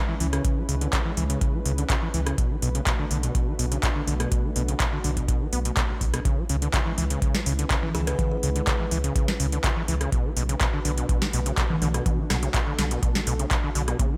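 Acid house with a trippy, gritty mood, built on a squelchy, distorted sawtooth acid bass riff with 12-bit sampler grit, a round, dark sub bass, a detuned pad sustaining chorused C#m7 and Bm7 chords in the background, an overdriven deep electronic kick and an up-front, booming drum machine with crisp snare, metallic hats, handclaps, rim clicks and congas. The pad and both basses pump against the kick, while a woody, bright kalimba with delay rings out briefly at 7.9 seconds in this dry mix.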